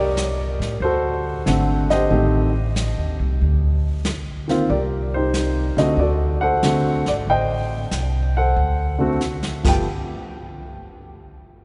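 Swinging at 93 BPM in 4/4, this late-night jazz piano trio fragment sets an intimate upright piano with audible action noise and long sustain on the melody over a woody, thumpy pizzicato upright bass and a brushed kit with dark cymbals and a boomy kick, the trio sitting in a cavernous cathedral reverb, with a drum fill at 9.2 seconds just before the harmony lands on G9 at 9.5 seconds.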